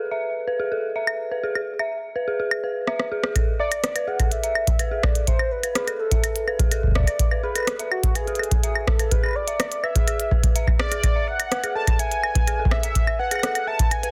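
IDM at 125 BPM in 4/4, melancholic and cerebral, tuned to A4 = 441 Hz and cut from a longer piece. A dark, detuned FM synth bell opens with eerie, inharmonic, decaying arpeggios through chorus, a low-pass filter and tape echo, joined at 1.1 seconds by a glitchy, overdriven drum kit of claves, clicky hi-hats and rim clicks. After a drum fill, a deep analog kick lands up front at 3.4 seconds as the harmony moves from G#m and E to a rootless F#m11, and a velvety, sustained sawtooth-and-triangle unison lead with vibrato, chorus and tape echo carries the melody over light reverb and a dense, heavily limited master.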